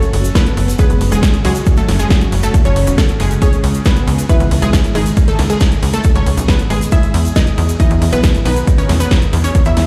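Lush, detuned sawtooth plucks carry the melody from the very start of this emotional, euphoric uplifting trance excerpt in C# minor at 137 BPM, their bright, punchy tone pumping against the sidechain and trailing delay. Beneath them a felt-muted upright piano plays a soft second line, mellow and intimate with audible action noise and its own delay, while a very quiet second unison pluck with a filter sweep adds a further line high up. A supersaw pad holds sustained chords in the background, its slow attack and moving phaser notch pumping with the sidechain as the harmony moves from F#madd9 to C#m at 3.4 seconds and E at 6.9 seconds. A tight, nasal sequencer bass enters at 0.1 seconds, up front and driving with a filter-pluck snap, and a punchy analog kick arrives at 0.4 seconds as the loudest part. A big-room kit with a huge snare and metallic hats, re-recorded in a small room, plays alongside a grainy egg shaker, and the whole mix sits dry yet played back through a big sound system in a bare stone room.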